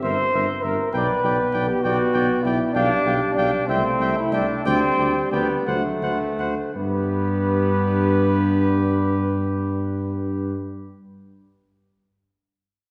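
A wet, reverberant church or concert-hall acoustic surrounds this short classical brass quintet passage, cut from a longer piece. The mood is solemn and grave, in G major and 6/8 at a rubato pace of about 54-66 BPM counted in dotted quarters, with a slowing between 1.8 and 6.8 seconds. A warm trumpet carries the melody above a distant, roomy flugelhorn on the second line, while a dark French horn with a smooth top sits in the background. Up front, the trombone and the mellow tuba both add a light vibrato, the trombone placed set back in the hall while supplying accompaniment and the tuba anchoring the bass. The harmony passes from C7 over G through G/B, G7/B, C, D7sus4 and D7 before settling on G at 6.8 seconds as a new section begins.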